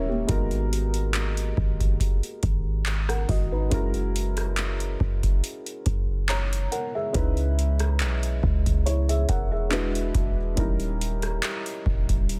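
A deep, boomy 808-style bass sits up front in this moody, longing contemporary R&B fragment, cut from a longer piece. Its sine tone carries a noise layer and a fast attack that then decays. A booming analog drum machine joins at 0.3 seconds, pairing a deep kick, metallic hats, handclaps and rim clicks with a tape-warmed tone that sounds re-recorded in a small room, all with a light swing on the sixteenths. Beneath them, a felt-muted upright piano plays soft, dark, boxy accompaniment with an intimate, mellow character. The harmony moves from G#m7 to F#9 and C#m9, then E9 arrives at 9.7 seconds and a tense D#7b9 at 10.6 seconds. Little reverb touches the sound, and the master is dense and heavily limited in a modern way.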